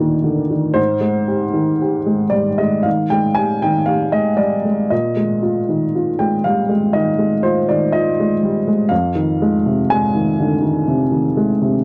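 Unhurried and rubato in 4/4 at roughly 57-62 BPM, this short passage of neoclassical minimalist piano, cut from a longer piece, feels tender and peaceful. A solo upright piano tuned to A4 = 445 Hz opens on a single Eb5 before settling through Abmaj7, Bb7sus4 and Fm7, ranging from F2 to Ab5 across its 11.8 seconds. Its woody, slightly detuned tone sits up front and intimate with light reverb, the audible action noise adding to the close, dry 1970s-style studio feel.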